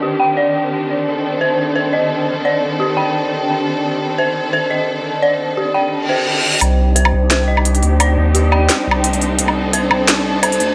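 A moderate echo-chamber reverb gives this tense, cinematic half-time drum and bass fragment, cut from a longer piece at 173 BPM in C dorian, a spacious, shadowy feel. It opens on a Cm(add9) chord held by a clear, lush symphonic string section, bowed with vibrato and coloured by gritty 12-bit sampler texture, while an eerie, detuned FM synth bell plays decaying, inharmonic arpeggios through chorus, phaser and dub echo. At 6.0 seconds a reverse cymbal and riser rise from the background. At 6.6 seconds a deep, saturated sine sub bass and a layered electronic kit with a cracking snare, crisp hats and woodblock arrive up front, with a lightly swung sixteenth-note feel. From there the strings take a filter sweep as the passage builds until it breaks off at 10.7 seconds.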